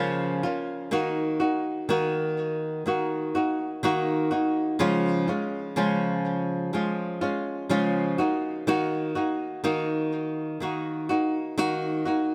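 A lush hall reverb surrounds a close, up-front flamenco guitar, its warm acoustic tone carrying audible finger squeak and digital delay. This melancholic, longing pop fragment, cut from a longer piece, moves at a slow 62 BPM in straight 4/4 in Eb minor, with the fingerpicked solo guitar playing alone throughout its 12.3 seconds. The chords shift from Bbm/Db to Ebm, then to Db at 4.8 seconds before returning to Ebm at 8.2 seconds.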